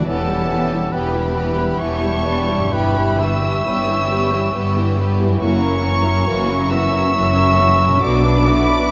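A focused, vibrato-rich chamber violin section carries the yearning melody high above this solemn, rubato romantic orchestral excerpt in 3/4, alongside a pure, crisp-attacked flute, a smooth-topped oboe and a lush background studio violin section on second lines, while a mellow bassoon, an even, distant viola section, a very quiet French horn section holding sustained chords and a ringing thumb-plucked harp's arpeggios fill the middle over chamber cello and double bass sections, all moving from Em through F#7 to Bm in a vast, echoing cathedral reverb.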